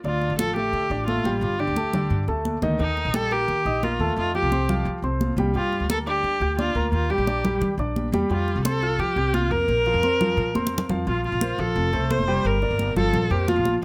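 A rich, focused bowed viola carries the vibrato-laden melody up front over a relaxed, danceable Cuban son and guajira groove at 174 BPM in Bb major, with a woody, dark pizzicato upright bass, a grand piano spinning long-sustained arpeggios through tape echo, and bright, high-tuned, dry congas, all captured with close, detailed microphones and light reverb, and a drum fill at 10.6 s leading into a new section at 11.1 s of this brief cut from a longer piece.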